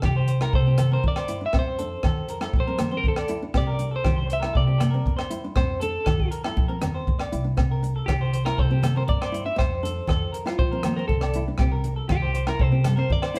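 A straight 4/4 highlife groove at 119 BPM in C mixolydian drives this sunny, warm excerpt cut from a longer piece, with a dry, punchy compact cocktail kit up front on hi-hat, kick and rim click, ringing agogo bells and hard-hand congas in the background, woody pizzicato upright bass, picked semi-hollow electric guitar arpeggios, full-bodied fingerpicked nylon-string accompaniment entering at 0.4 s, and a clean electric guitar melody with tremolo, all swaying between C and F chords in a moderate stone room.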